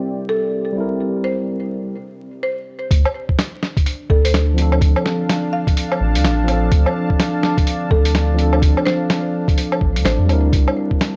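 Swung sixteenths in 4/4 shape this nocturnal, wistful future garage excerpt, though the beat holds back until 2.9 seconds, after a brief break. Before then, a clean tine electric piano with tape echo and a deep, moody pad of detuned sawtooth layers with chorus and a slow attack hold the harmony, both breathing with sidechain pumping. Over them, a buzzing marimba struck with hard mallets carries a woody, dark melody through its own tape echo. When the groove arrives, a muffled, thumpy kick and a pitched-down, lo-fi sampler kit of hi-hat, medium-tuned snare and woodblock sit up front in studio reverb, joined by a soft, round dub sub bass that also pumps. The chords move from C7 to Dm7 and return to C7 near the close, all within a dry, gritty hardware sound dusted with vinyl crackle and light reverb.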